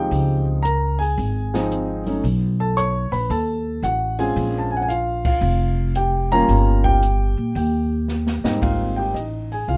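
A jazz piano trio swings at 113 BPM in 4/4, sophisticated and swinging, in a short passage cut from a longer piece. A dark grand piano carries the melody across a range of Ab2 to C#6, its mellow, intimate tone sitting up front with audible action noise that lends a vintage character. Beneath it, a pizzicato upright bass with gut strings gives a woody, thumpy line between F1 and Bb2, also close and present. An acoustic drum kit in a small room plays crash, ride, hi-hat, snare and a boomy kick, its dark cymbals and rolled-off top keeping it smooth and a little behind the other two. The harmony moves through Dbmaj7, B9, Bbm9, Gm7b5 and Eb under light reverb, with a band accent at 5.2 seconds and a drum fill from 8.1 to 8.6 seconds leading into a new section on Abmaj7.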